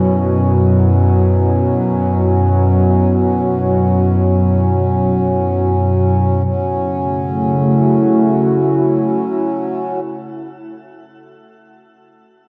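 Floating in free time, this spacious, reflective ambient excerpt sets a warbling, nostalgic lo-fi pad of detuned sustained chords up front, glazed with chorus and shimmer reverb, over the reedy, breathing drone of a pedal harmonium, moving from Esus2/F# to F#m7 at 6.4 s inside a dark, lush hall reverb.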